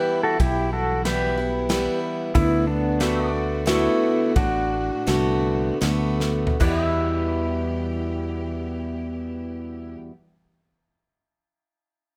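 Lightly reverberant, this lonesome, dusty honky-tonk and classic country excerpt in E minor moves in 3/4 at 74-92 BPM over Em and D6, with an up-front twangy pedal steel singing the melody with slide and volume swells, a full-bodied dreadnought acoustic guitar picked on fresh strings, a dark, round fingered electric bass, and an airy, polished acoustic drum kit with punchy kick, while a background pedal steel and a lush, bowed string section with vibrato hold chords as the music slows from 2.3 s and a drum fill at 6.2 s leads into the return of Em, after which the drums stop at 6.8 s.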